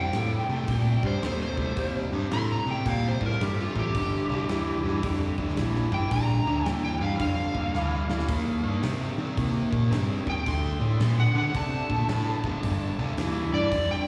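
A dark, overdriven slide guitar solo leads this gritty, heavy cut of blues rock and southern rock, played fingered with slapback echo over a swung 110 BPM groove in G minor. Beneath it, a biting, double-tracked rhythm guitar picks an up-front riff with spring reverb and slapback, while a fuzzed, direct-and-amped electric bass adds thick low-end grit. A huge arena drum kit with a punchy kick, fat snare and bright cymbals drives the heavy feel, with a drum fill at 7.7 seconds, all heard as a live gig through the venue's PA with recital-hall reverb.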